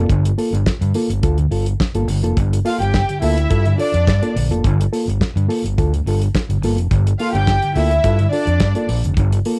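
A home cassette recording with studio reverb gives this short cut from a longer disco piece a slightly worn, intimate sound, danceable and sultry in a straight 4/4 groove resting on a single Gm9 chord in a dorian mode. A reed electric piano carries the accompaniment, its reedy tone lightly overdriven through built-in speakers and softened further by cassette tape. Underneath, an overdriven fingered electric bass sits up front, amped and punchy with a rounded warmth, anchoring the low end. A damped 70s drum kit plays hi-hat, tight kick and a medium-tuned snare, dry and acoustic with a rolled-off top. From 2.7 seconds a dark studio string section adds a lush second line, bowed sul tasto with vibrato for a woody ensemble tone, before falling away at 8.8 seconds.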